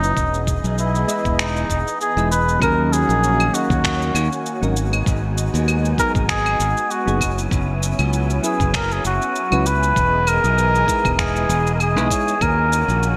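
Relaxed and smooth, this swung sunset chillout excerpt sets a veiled, cup-muted jazz trumpet with scooped notes and delay up front over mellow, round electric-piano-like synth keys with chorus, tremolo and an opening filter sweep, a thick, detuned sawtooth pad, a growly, bright fingered electric bass with tube saturation, and a gritty, tape-warm electronic kick, plus cabasa, finger snaps and claves set in gated reverb, while an airy, wind-like noise texture drifts in at 3.6 seconds, all within a lush hall and bright 1980s-style digital production.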